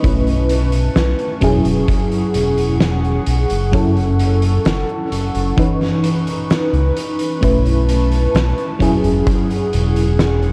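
Vaporwave with a hazy, woozy mood, heard in a short slice from a longer piece that drifts through lush seventh, ninth and suspended chords. An up-front FM electric piano with a soft pad layer carries the accompaniment, its detuned, dreamy tone shimmering through tremolo, analog chorus and tape echo. Behind it, a warbly tape-like pad holds sustained chords higher up, slow to bloom and nostalgic, bathed in chorus, phaser and its own reverb. A glossy, retro synth bass sits prominently underneath, its pulse-wave and sawtooth tone given a tube-saturated edge. The drums are gritty and saturated, with a punchy kick that drops out at 9.5 seconds and an oversized, low-tuned kit of hi-hat and fat snare pumping in a bright stone room. The whole recording sounds worn and cassette-like, with a warbling pitch drift, light reverb and small room ambience.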